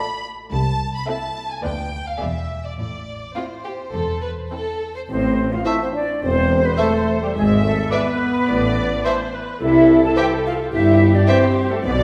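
The mellow French horn section stands out most in this playful, whimsical cinematic cue, holding sustained chords from 5.1 s with a sneaky, magical air at 106 BPM in 4/4 and A minor. Before the horns enter, lush violins carry the melody and an expressive second line with vibrato, while a rich but distant viola section supplies accompaniment. A cello section in the background and a close double bass section hold the bass. The cue's second section brings a bright, airy flute section with crisp attack on another line, and a tuba underpins the low end. An oboe adds a further line and a clear bassoon joins the accompaniment from 5.7 s, both set back in the mix. The harmony moves from Dm through Am/C, Bdim/D and E7 to Am, later passing through E7/G# and settling on C, with a concert hall reverb giving the ensemble a spacious glow, in a clip cut from a longer piece.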